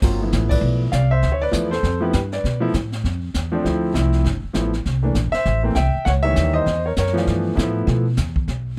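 A concert grand piano carries the melody up front in this swinging, playful jazz piano trio fragment, its tone natural and warm with a deep bass, ranging from Eb3 to G5 before it drops out at 8.0 seconds. The tune moves at a brisk 198 BPM in 4/4 with a light swing on the eighth notes, sitting in G mixolydian and tuned slightly low to A4 = 438 Hz. The pizzicato upright bass is also close and present, woody and dark with steel strings, holding down the low end from G1 to B2 and carrying on with the drums to 8.8 seconds. The brush kit sounds distant and roomy, as if in a small room, with dark cymbals, a high-tuned snare, a boomy kick and a rolled-off top. The band hits an accent together at 0.5 seconds, and the harmony centers on G13, passing through Dm7, C13 and C#dim7 before returning to G13, all wrapped in a light reverb.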